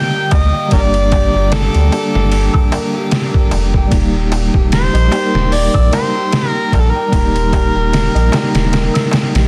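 Dark, brooding trip hop moves with a slow, lightly swung sixteenth-note feel, and the chords shift from Gm to Eb at 3.9 seconds. An overdriven harmonica carries the melody as a jazz-style solo, gritty and amplified with light vibrato, scooped notes, punchy tongue slaps and a tape echo trailing its phrases. A mellow tine electric piano with tremolo plays the accompaniment through its built-in speakers, while a felt-muted upright piano traces soft, intimate arpeggios with tape echo in the background. A bright chamber violin section holds bowed, earthy chords far back in the mix. A very quiet, crisp metal-shell darbuka struck with hard hands enters at 0.1 seconds, and from 0.3 seconds a pitched-down, compressed sampler-style drum kit sits up front with a thumpy kick and medium-tuned snare alongside hi-hat and ride, joined by a round sine sub bass. The dry, heavily limited, dense master carries a layer of vinyl crackle, and the passage is cut from a longer piece.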